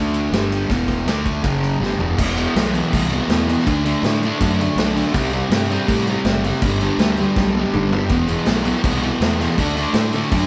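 A straight 4/4 pulse at 162 BPM drives this swaggering, raw garage rock excerpt in E minor, with a dark, double-tracked fuzz guitar riff ranging from E2 to D4 sitting up front over a round, overdriven fingered bass, as the band plays live together in one room with moderate studio reverb. The vintage acoustic kit is gritty and mid-forward, pairing a tight kick and medium-tuned snare with dark cymbals and a rolled-off top, and it breaks into drum fills at 1.8 and 7.3 seconds. After the opening stretch of quick chord changes, the second section from 2.2 seconds cycles through E5, D, C5 and G.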